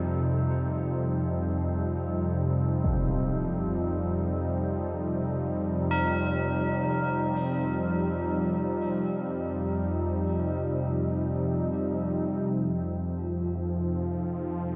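Soaked in a vast, wet reverb with a dark production, this cut from a longer dark ambient drone feels desolate and ominous. A calm, detuned organ-like drone with ensemble chorus sits up front beside an airy, sawtooth pad that evolves through a filter swell, while solemn tubular bells ring out arpeggios through tape echo and a metallic bronze singing bowl hums barely audible beneath. A huge, bright impact strikes at 2.8 seconds, and at 12.5 seconds the bells and bowl stop, leaving the drone and pad to hold a bare F5 chord.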